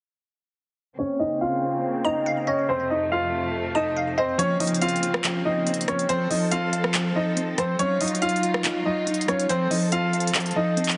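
Brooding and dark, this half-time trap excerpt opens with an intimate, up-front concert grand piano melody, its action noise audible through a low-pass filter and delay, over distant, bowed symphonic strings with light vibrato. A glassy, detuned wavetable pluck with chorus and a filter sweep adds a brief second line from 2.0 s, and at 4.4 s a clean, fingered electric guitar and an overdriven trap kit of crisp hats, handclaps and rim clicks join in. Light digital reverb and heavy compression give the mix a radio-like sheen.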